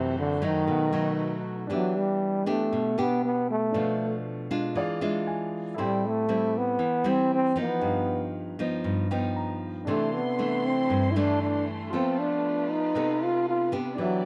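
Close, detailed microphones and a light reverb give this melancholic, wistful bossa nova fragment an intimate, present sound. At 117 BPM in a straight 4/4 in E minor, a breathy trombone carries the melody up front, its mellow, whispered tone shaped by soft attacks, scooped notes and a light vibrato in a jazz style. Beside it, a nylon-string guitar fingerpicks the accompaniment with fresh strings and an audible finger squeak, giving the classical-leaning part an acoustic glow. A polished grand piano sits in the background and steps forward with short fills at 4.8 and 8.9 seconds. A dark, lush violin section bows sustained chords with expressive vibrato and portamento, heard briefly at the opening, then returning from 9.9 seconds. The harmony drifts through rich jazz chords such as Em7, E7b9, Am7 and C69 before the fragment breaks off on F7#11.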